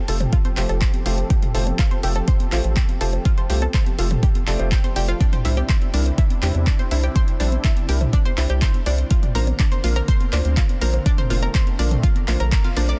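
A straight pulse drives this hopeful, euphoric progressive house cut, anchored by a deep, layered electronic kick sitting up front, with handclaps and dark hi-hats from a deep house kit and electronic toms, bongos and congas tucked in the background, all breathing with sidechain pumping except the kick and the kit. A round analog bass, deep and dark with a fast, plucked filter attack, sits prominently beneath a bright, detuned sawtooth pluck that spins arpeggios through subtle chorus and tape echo while a filter sweep moves across it for the whole passage. A felt-muted upright piano adds soft, intimate stabs, mellow and low-passed with a touch of tape echo. Behind them, an evolving supersaw swell holds sustained unison chords with a soft attack and a moving notch, roughened by vintage 12-bit sampler grit. The harmony moves from Fadd9 to Cadd9 to Bbadd9, the band lands an accent at 12.5 seconds, and the dry, dense, heavily limited mix makes this feel like a slice lifted from a longer track.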